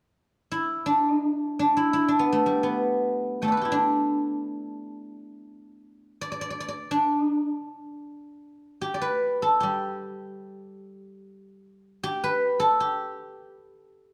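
Pastoral and elegant, this short passage of Chinese traditional solo plucked-string music unfolds in free time in the D zhi mode, with a lone fingerpicked guzheng entering at 0.5 seconds, sitting up front in light reverb and ranging from G3 to G5 with a ringing, silvery tone, before the music moves into a new section at 8.0 seconds and runs to 14.1 seconds as a fragment of a longer piece.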